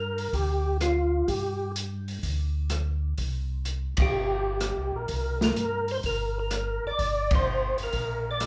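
A percussive tonewheel organ and a mellow tonewheel organ open this short cut from a longer soul jazz organ trio piece together. The percussive organ carries the melody with a clean, third-harmonic percussion attack, chorus vibrato and a slow rotary speaker. Beneath it, the mellow tonewheel organ plays a round, low bass line, its key click audible through its own slow rotary. An acoustic open jazz drum kit joins at 0.2 seconds with a punchy kick, a medium-tuned snare, rim click, hi-hat and smooth, rolled-off ride cymbal. The swung 4/4 groove has a late-night, bluesy mood, moving from Gm7 to C5 and back to Gm, with band accents at 3.9 and 7.2 seconds. All three parts sit up front in a moderate large studio reverb, heard as a band playing live in one room.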